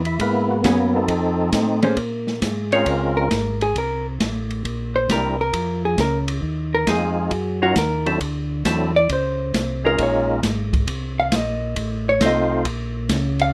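The vintage hollow-body jazz guitar stands out, dark, clean and compressed, taking a solo from 2.0 seconds over chords that move from Bbm9 through Db69 and back to Bbm, in a bluesy, late-night soul jazz organ trio swinging at 135 BPM in Bb minor. A percussive, lightly overdriven tonewheel organ carries the melody with third harmonic percussion, chorus vibrato and a stopped rotary speaker until 12.7 seconds, while a second, smoother tonewheel organ with key click and slow rotary speaker supplies the bass line. An open jazz drum kit, acoustic and boomy in the kick with dark cymbals and a rolled-off top, sits back in a small room under light reverb in this piece cut from a longer performance.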